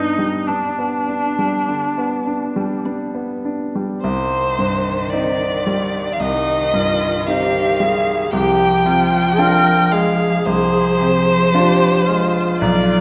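Classical chamber music, this slow, rubato romantic movement for piano quartet is melancholic and elegiac, cut from a longer piece. A clear, polished concert grand with deep bass and short sustain opens up front alongside a distant, warm viola bowed with vibrato and expressive portamento. At 0.5 seconds a rich, focused violin takes the melody with vibrato, over a smooth-topped cello carrying a second line, all inside a wet recital hall reverb, with a new section arriving at 4.0 seconds.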